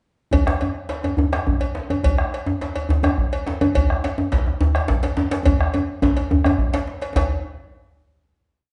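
At 0.3 s a West African drum ensemble starts together in a brisk 12/8 at 140 BPM: a dark, compressed and saturated bombo sits up front with an evenly spread pattern, a close, dry cowbell rings out a metallic bell pattern, and a medium-tuned djembe played with soft hands keeps an even part in a live room sound. A second, deep djembe, close and up front, carries the lead drum phrases, and a drum fill runs from 5.5 s to 7.2 s. This short, complete piece has an earthy, powerful mood, and it ends on a final hit at 7.2 s, all set in a wet large-studio reverb.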